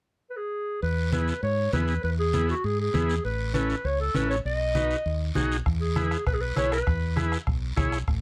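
A warm, distant clarinet opens this sunny, joyful cumbia excerpt at 0.3 s, carrying the melody in a solo, classical style while sitting up front in a roomy space. A dark, round fingered electric bass and a raspy guiro join almost at once, with a buzzy vintage combo organ, its heavy vibrato clean and up front, filling in the accompaniment over the chords E, A and B. Low-tuned, damped congas with a thin skin add a bright, compressed and saturated pulse from the background. At 5.7 s, as the harmony returns to E, a bombo struck with a soft beater enters close beneath the groove. The straight, lively feel and dry, close, detailed sound keep every part crisp and joyful.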